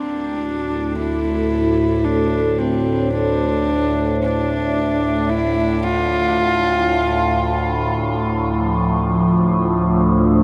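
Desolate and dark in mood, this ambient drone passage, cut from a longer piece, opens with an up-front, husky horsehead fiddle whose earthy, airy bow carries a melody with light vibrato and portamento through a delay until 8.0 s, over a low, detuned sawtooth-and-sine drone of moving overtones, held up front with chorus and its own reverb, before a bright, evolving pad with a filter swell and chorus enters at 8.5 s, the whole passage steeped in a huge, wet reverb and a warm production.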